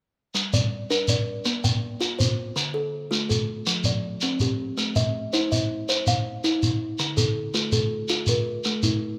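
Hypnotic and rippling, this short excerpt from a longer piece is built on a southern African traditional mbira-style interlocking cycle, moving at 108 BPM in dotted quarters with a straight 12/8 feel. A kalimba carries the arpeggios from 0.3 to 9.2 seconds, its short, thumb-plucked notes sounding woody and airy over a solid board as they range from D3 to G5 in an equiheptatonic tuning centred on G. A shekere supplies the percussion alongside it until 9.0 seconds, its grainy, mellow texture set in a more distant, larger-sounding space while still sitting up front. The harmony cycles through Gm, Bb, Dm, F and Am before returning to Dm at 7.0 seconds. Light reverb and small room ambience surround the pair in a rough home demo mix.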